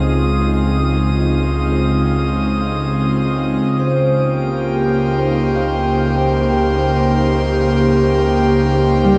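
Ambient and serene, this 9.2-second fragment of a longer piece floats on a breathy, detuned pad set up front with chorus and shimmer reverb, while a very quiet, fingerpicked concert harp rings out arpeggios, a round sine sub bass holds a deep Db2, and a glassy texture of drifting overtones hovers high above, the whole mix sitting in a huge, dark reverb as the harmony shifts from Dbmaj9 to Cm7/Db at 3.6 seconds.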